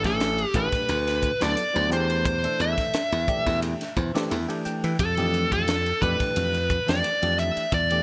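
A slick, funky electric jazz fusion groove at 88 BPM opens with the full band together: a dark, smooth lead guitar carries the melody up front with overdrive and delay, over a glassy slap bass, a bell-like tine electric piano treated with phaser, and a crisp acoustic kit with a punchy kick, high-tuned snare and bright cymbals in a small, pumping room, with sixteenths gently swung. The harmony moves through Asus2, D13, A5/E and Fmaj7, and the electric piano adds a fill from 3.6 to 5.0 seconds. Light reverb and a bright 1980s-style digital production frame this short section cut from a longer piece.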